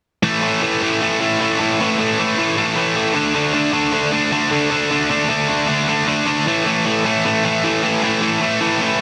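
Energetic and upbeat, this short punk excerpt at 154 BPM in straight 4/4 features a lone bright, overdriven electric guitar, picked and double-tracked up front with light reverb, driving through A5, D5 and back to A5 power chords between A2 and D4 from 0.2 to 9.0 seconds in a dense, heavily limited modern master.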